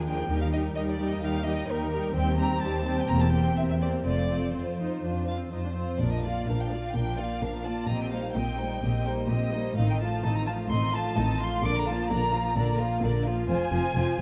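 Cheerful and graceful, this quick classical-period movement for string orchestra, cut from a longer piece, sets a close, expressive first violin melody over a clear, intense second violin line and focused viola accompaniment, while the cello section adds soft-attack portamento and the double basses enter at 0.3 seconds beneath, all bowed with vibrato in a dark, warm production on a scoring stage with moderate reverb.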